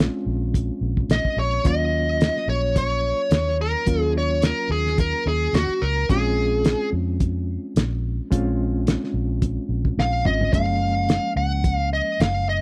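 Straight-eighth soul blues with a brooding, mournful mood, this short excerpt sets a smooth, overdriven lead guitar entering at 1.1 seconds over a barky, reedy electric piano with fast tremolo, a round, foam-muted fingered bass and a cloth-damped, thuddy drum kit with a fat snare that plays a fill at 10.0 seconds, all captured as a dry, close 1970s-style studio recording in a small room.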